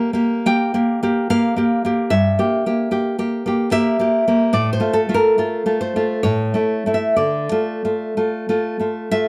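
A fingerpicked nylon-string classical guitar sits up front from the first moment, playing a passionate, wistful romantic solo in 3/4 with a rubato feel around 61-75 BPM across a range from G2 to G5. Its harmony drifts from Gm/Bb through Gm, Bbmaj7sus2/A and A before settling on Dm at 7.2 seconds. Light reverb and a dark production surround the guitar's warm acoustic tone, and finger squeaks are audible in this brief fragment of a longer piece.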